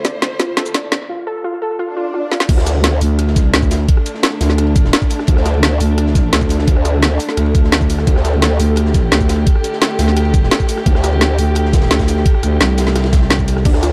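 Dark and mechanical, this cut from a longer technical drum and bass track opens with a build-up where a rich, focused chamber string section holds bowed, vibrato-laden chords under a warbling, lo-fi pluck playing detuned, chorused arpeggios with dub echo, while drum fills from an overdriven drum and bass kit with a woody snare and bright hats push ahead. A short electronic swell enters at 1.9 seconds, and at 2.5 seconds the drop hits as the pluck falls away until a brief return at the very end. An up-front, knocking electronic kick drives the drop, the strings pump against it, and a crunchy acoustic breakbeat kit sits in the background with dark cymbals, a medium-tuned snare and a gritty, rolled-off top. Up front in the mix sit two growling basses: a thick FM bass holds down most of the drop, while a wobbling, formant-filtered growl bass with chorus and saturation cuts in and out. The production is dark and warm, with light reverb and a small room ambience.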